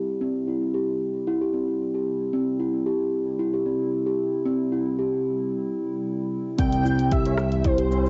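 Organic downtempo in C major at 113 BPM with a lightly swung, hypnotic feel, this excerpt opens on a round, ringing steel tongue drum playing arpeggios up front through a filter sweep and tape echo over a warbling, nostalgic tape-like pad with chorus and sidechain pumping. After a break from 5.5 seconds, a breathy flute-like synth lead, a smooth gliding synth bass, a deep kick and a deep house kit with dark hats, rim click and shaker arrive at 6.6 seconds, joined a moment later by a distant low-tuned tabla, the whole recording softened by lo-fi cassette tone and moderate room reverb.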